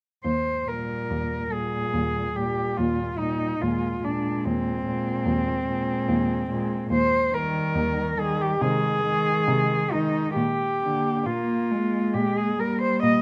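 A dark, lightly reverberant recording opens this lyrical classical excerpt for four muted, bowed cellos at a rubato 71 BPM in Eb major, where a close, up-front melody cello with vibrato and portamento sings over a veiled bass cello in the background, joined at 0.7 seconds by a smooth-topped second line and a soft-attacked accompaniment, as the harmony moves from Eb through Ab/C at 8.6 seconds to Bb at 10.4 seconds.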